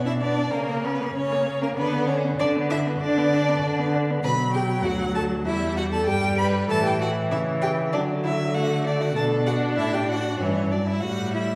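Lively and graceful, this quick classical-period movement for string quartet moves at 97 BPM in a straight 4/4, centred on B minor and passing through E minor, A and D across an 11.6-second passage cut from a longer piece. A rich first violin carries the melody with expressive vibrato and portamento, while the second violin plays a soft-attacked, close inner line with its own vibrato and portamento. The viola adds focused, distant accompaniment, and a warm, smooth cello sits up front on the bass. The whole quartet is bathed in a wet recital-hall reverb and heard from further back in the room.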